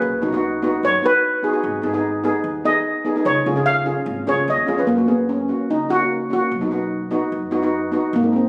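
Festive and sunny, this fragment of a straight-feel calypso at 148 BPM in F# major has a mellow, shimmering steel pan played with soft rubber sticks carrying the up-front melody, including a solo over the first 4.9 seconds. A second, boxy steel pan on medium rubber sticks supplies accompaniment, and a woody, growly pizzicato upright bass sits low beneath them. The chords move through B, G#m, C#add9, F# and B, and the phone-in-the-room recording has light reverb and a dull top end.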